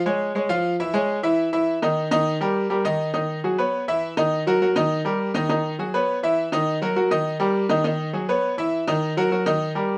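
A bright concert grand piano opens this driving, passionate Latin passage at 0.1 s, playing solo from start to finish at a brisk 204 BPM in a straight 4/4. The instrument sounds brilliant yet worn, with a deep bass and a present, up-front placement. Its range spans D#3 to E#5, and a wet small-room reverb gives the feel of a band playing live together in one space. The harmony moves from C# to C#m and D# before the second section arrives at 3.1 s, where a cycle of G#m7, C#m9, D#m and D# repeats. Cut from a longer piece, the passage runs to 10.0 s, ending mid-cycle on D#m.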